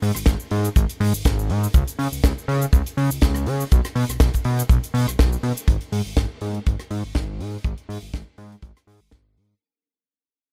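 The sound is dry and close, with little reverb, in this short excerpt cut from a longer nu-disco track that feels groovy and sleek at 122 BPM in G# minor, with a light 16th-note swing. A fat analog bass carries the low end from G#1 up to C#3, its detuned sawtooth tone thick and tube-saturated, with a fast attack, a decaying body and a filter sweep, sitting up front in the mix. Underneath, a tight acoustic kick drum enters at 0.3 s, natural-sounding in a small room, and sits prominently forward. A tight funk drum kit fills in with cabasa, hi-hat, rim click and a high-tuned snare, recorded naturally in a small room and placed further back. The passage opens on a drop and then fades out from 5.7 s to the end.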